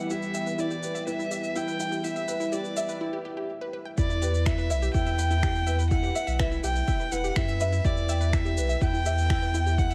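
Hypnotic and melancholic, this piano and strings electronica in E minor at 124 BPM opens with a rich, airy violin melody over a muted, boxy felt piano riff, punchy detuned pluck arpeggios with sidechain pumping and delay, a round sub bass, tape-tinged electronic shaker and finger snaps, and a lush chorused pad that builds until it stops at 3.0 seconds for a brief break, before an overdriven deep kick arrives with the drop at 4.0 seconds, all set in a moderate recital hall reverb.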